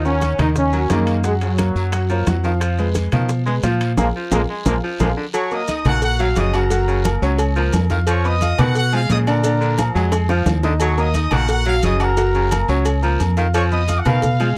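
Salsa at 176 BPM, danceable and fiery, where a punchy trombone section carries the melody until a band accent and drum fill near 5.3 seconds hand it to a distant, roomy trumpet section, over a clear baritone saxophone second line, a brilliant, worn grand piano with audible action noise, a dark, round fingered electric bass up front, and background congas, bongos and cowbell, ringing timbales with agogo bells, raspy guiro and grainy maracas, all in a dry, close 1970s-style studio sound moving through Ebm7, Gbmaj7 and Bb7 in a section cut from a longer piece.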